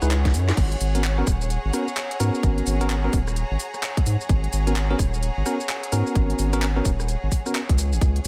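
UK garage in a bouncy, skippy two-step groove with swung 16ths, cut from a longer piece and dry with little reverb. A tight, up-front electronic kick and a tape-toned garage kit with cracking snare, crisp hats, handclaps, rim clicks, shaker and crash sit over a deep, thick saturated sub bass, while a bell-like tine electric piano plays bright, clean stabs through dub echo until 7.6 seconds. A lush bowed string section with smooth vibrato adds sidechain-pumped texture beneath, and a drum fill from 0.2 seconds leads into a band accent at 0.5 seconds as the harmony moves from F#13sus4 to G#m11.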